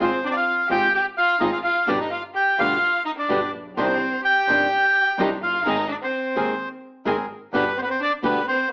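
A rubato tango in 4/4 pulls and stretches its beat, giving this short fragment of a longer piece a tense, melancholic air. A reedy, mid-forward bandoneon carries the melody up front, while a distant violin plays a second line beneath it with vibrato, portamento and expressive bowing. A small, fingerpicked nylon-string guitar supplies warm accompaniment, its finger squeak audible. A second bandoneon, close-miked, dry and full, adds stabs in the background, and a focused, bowed double bass with a bright edge and vibrato anchors the low end. The harmony moves from Fm/Ab through G, Cmadd9 and Abadd9 back to G. Moderate large-studio reverb and an AM-radio colouring give the sound an old-broadcast feel, and the excerpt closes at 8.7 seconds.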